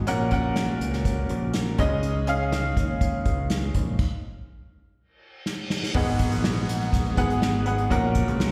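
A bright, woody upright piano opens this hopeful piano-driven pop excerpt at 122 BPM in a straight 4/4, joined at once by a fingered electric bass with a growly, direct tone and a soft, flute-like tonewheel organ holding sustained chords in the background through chorus vibrato and a fast rotary speaker. An airy, polished acoustic drum kit played with bundle sticks follows almost instantly, sitting up front with a punchy kick, a medium-tuned snare, hi-hat and crash cymbal, while the slightly detuned piano carries a slapback echo. The harmony moves from F#/A# to C#sus2 before a stop at 4.0 seconds, where an electronic reverse cymbal and downlifter enter at 5.3 seconds and a drum fill leads into a new section at 6.0 seconds on G#m7, returning to F#/A# near the end. The sound is that of a live gig heard through the venue's PA, with light reverb, small room ambience and a recital hall tail lending the excerpt a warm atmosphere.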